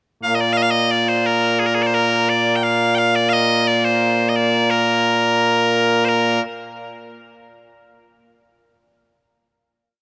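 Piercing, bright bagpipes carry this short piece alone, playing a modal melody with ornaments from 0.2 to 6.4 seconds. This is ceremonial, stirring Scottish traditional pipe music in Bb major, set in 2/4 at 87 BPM with a straight feel. A brief pickup bar leads into a single melodic section, and a final note begins at 6.1 seconds. The pipes sit loud and up front, their continuous tone ranging from Bb2 to G5. A huge ambient reverb, applied at a moderate level, surrounds the sound with a long, spacious tail.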